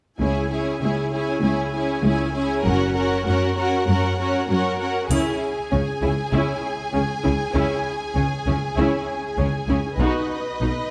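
Cinematic, epic orchestral film score in C# dorian at 98 BPM, relentless and dark, with bowed string sections carrying vibrato throughout as chords move from C#m to F# and later settle toward B. A clear, intense violin section sits on a second line above a focused viola section with a smooth top, while a close cello section and an even double bass section anchor the low end. From 5.1 seconds a build-up begins, marked by a bright triangle that sounds until 6.3 seconds, all within a moderate scoring stage reverb, in a passage cut from a longer piece.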